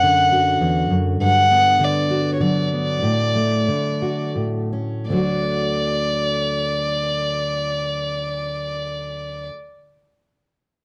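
A dark, intimate violin carries the melody up front, bowed by a single player with a soft attack, light vibrato and a smooth top, played sul tasto between C#5 and F#5. Beneath it, a fingerpicked steel-string dreadnought guitar gives full-bodied accompaniment that reaches down to D2, also sitting up front in the mix. This short piece cut from a longer acoustic folk-pop ballad is in D major and 3/4, with a straight feel and a heartfelt, hopeful mood at 80-102 BPM. The tempo slows between 1.2 and 5.1 seconds as the chords move from Dmaj7/F# through Gmaj7, D/A and A, before a second section settles onto D at 5.1 seconds. Light reverb surrounds the pair, and the sound has the worn, warbling quality of old cassette tape, with a warbly pitch drift.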